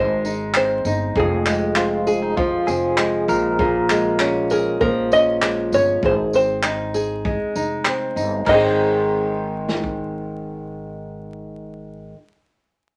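Carefree and sunny, this short excerpt of acoustic pop moves at 98 BPM in a straight 4/4, settled in Ab major as the chords pass from Ab through Fm and Bbm7 before returning to Ab. An open-back banjo carries the melody with a mellow, plunky, fingerpicked voice. A flamenco guitar sits up front, fingerpicking the accompaniment. Beneath them, a pizzicato upright bass gives a woody low end, while a natural country drum kit with a punchy kick, medium-tuned snare, bright cymbals, handclaps and tambourine enters at 0.2 seconds and drops out at 10.0 seconds. A clean, compressed electric guitar, recorded direct, adds a twangy picked second line with tremolo, appearing at 1.8 seconds and again from 8.5 seconds as the music shifts into a new section. Moderate studio reverb and a layer of vinyl crackle give the recording a homey, lived-in sheen.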